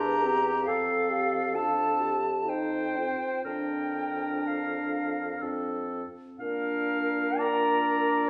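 A wet recital-hall reverb surrounds this short cut from a longer piece, a tender, lyrical slow romantic movement for wind quintet in triple metre with a flexible, rubato feel. The silver concert flute carries the melody up front, its pure tone shaped by a soft attack and vibrato. The oboe sings a distant second line with light vibrato, while the roomy French horn and a vintage-toned clarinet fill in the accompaniment. A mellow bassoon anchors the low bass. The harmony drifts from C7/E through F9 and Bb/F to F, and the opening phrase begins again on a Bb chord at 6.4 seconds before the excerpt ends at 8.3 seconds.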